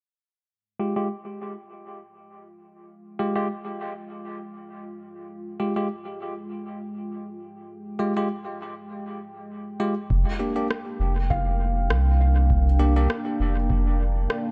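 A bell-like tine electric piano opens this hazy, meditative ambient dub excerpt at 0.8 seconds, playing bright, clean stabs up front through a low-pass filter sweep and a dub echo. By 2.3 seconds a deep, moody pad fades in beneath it, its detuned sawtooth chords, thickened with chorus and a sub octave, sustaining with a slow attack and long release. At 10.1 seconds the groove arrives: a soft, round sub bass sits up front with a fast attack, while a deep, tape-warm electronic kick stays in the background and an overdriven rim click, also sent through dub echo, joins in. A felt-muted upright piano then adds high, intimate arpeggios with audible action noise and a touch of tape echo. Over a lightly swung 4/4 and a shift from Fmadd9 to Gm/F, the production stays dark and lightly reverberant, an excerpt cut from a longer piece.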